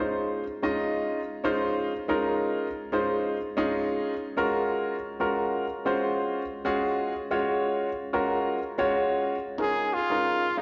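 Heard through a venue's PA in a recital hall, this recording sits in a lush, moderate reverb with a 2.5-second tail, and its top end stops at 7.5 kHz, giving it a dulled, roomy sheen. It's a slick, soaring jazz fragment cut from a longer piece, moving at 92 BPM in 4/4 with a light sixteenth-note swing in Db major. A clear grand piano carries the accompaniment up front from the start, polished and intimate, its long sustain ringing through a slapback echo while the action noise of the instrument stays audible. The harmony moves from Dbmaj9 to Gbmaj9 at 4.4 seconds, then settles on Db69. At 9.6 seconds a trumpet steps forward as a solo voice, its tone warm with a soft attack and gentle vibrato, also touched by slapback echo, playing the melody briefly before the recording cuts off.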